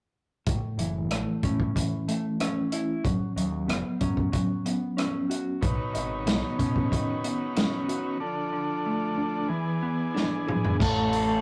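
A mellow, dark electric guitar riff with harmonic tremolo sits up front in this hypnotic, kaleidoscopic psychedelic rock excerpt at 93 BPM, moving through A, F#sus4, Badd9, Dm and E7 before landing back on A. A muffled, lo-fi vintage drum kit with a punchy kick and rolled-off top drives a straight 4/4 beneath a round, growling overdriven bass, while a buzzy combo organ with light vibrato enters at 5.6 s with sustained chords. A drum fill at 10.1 s closes the passage, and the rough rehearsal-room recording carries light reverb and saturation.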